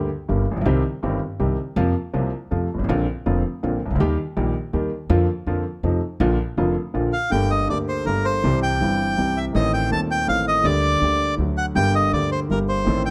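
Tango in 3/4 at 162 BPM with a rubato feel, this passionate, dramatic excerpt opens in Bb major with an up-front, clear vintage grand piano of short sustain accompanying a woody, growly pizzicato upright bass, until a dark, reedy bandoneon enters up front with the melody at 7.1 s as the music turns to G minor, all set in light reverb and captured with close, detailed microphones.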